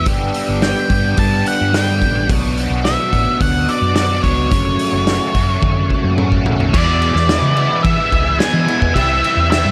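Trippy and hypnotic, this psychedelic rock passage at 108 BPM in 4/4 sets a dark, fuzzed-out lead guitar melody soaked in distortion and analog delay over a bright, double-tracked overdriven guitar riff through a rotary speaker, a round, punchy hollow-body bass, very quiet smooth organ chords with slow rotary chorus vibrato, and a vintage acoustic kit with a rolled-off top that plays a fill from 5.6 to 6.7 seconds as the G, Bm7 and F#m changes give way to E and then C.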